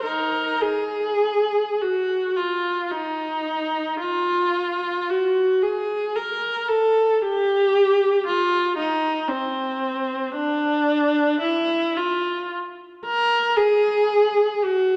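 Classical and meditative, this yearning passage for a single unaccompanied bowed viola drifts in a slow, rubato 3/4 at 50-60 BPM in Eb dorian, its rich, smooth, even tone shaded with vibrato and set in a dark production bathed in the long, wet reverb of a concert hall, heard as a 15-second slice cut from a longer piece.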